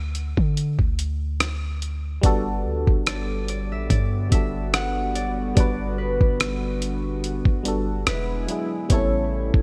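A lightly swung sixteenth-note groove from a gritty, thumpy sampler-style drum kit of kick, hi-hat and rim click anchors this tender, romantic contemporary R&B passage, with a deep, boomy 808-style bass and a ringing, fingerpicked concert harp melody touched with delay from the start, before a warbling, mellow FM electric piano with tremolo and a shimmering, detuned pulse-width pad with sidechain pumping enter at 2.2 seconds on a Gmaj7 chord that moves to E7 and A7 near the close, the whole sitting in light reverb with a bright 1980s-style digital sheen.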